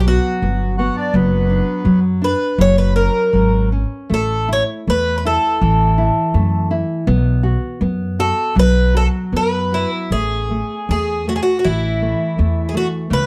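A fado-style ballad, mournful and full of longing, moves in a rubato 2/4 around 76-85 BPM, set in B minor before shifting to A major at 10.1 seconds. A picked twelve-string acoustic guitar carries the melody up front, its bright, shimmering, octave-doubled tone wrapped in plate reverb. Beneath it, a nylon-string guitar fingerpicks a full-bodied classical accompaniment, while a pizzicato upright bass with gut strings adds a woody, thumpy low end that also sits forward in the mix. A reedy accordion briefly contributes a second line, entering at 0.8 seconds and falling away by 2.0 seconds. The harmony drifts from B through F# and A, returns to B, and then settles on A, and the dark, warm production with moderate studio reverb lends the short passage, cut from a longer piece, a shadowed atmosphere.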